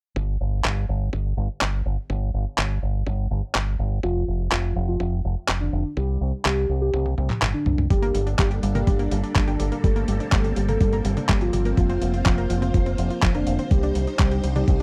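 A straight 4/4 italo disco groove at 124 BPM opens at 0.2 seconds with a thumpy, overdriven electronic kick and a fingered electric bass with an envelope filter that sits up front, dark and punchy with tube saturation. At 0.6 seconds, a gritty, dusty soul sampler-style kit of handclaps, hi-hat and toms joins, and both drum parts are re-recorded in a small room. In G minor and tuned to A4 = 444 Hz, the piece carries a nostalgic, danceable mood over chords moving from Dm/F and C5 toward Gmadd9, Fsus4 and Cmadd9. A soft, octave-layered synth lead enters at 4.0 seconds, full-bodied with vibrato, chorus, phaser and tape echo. After a drum fill, a lush string machine ensemble arrives at 7.9 seconds with soft-attack sustained chords treated with phaser and ensemble chorus, joined by a bright analog pluck playing arpeggios with chorus and tape echo in the background. The sound is dry and close, in the manner of a 1970s studio recording, and the passage is cut from a longer piece.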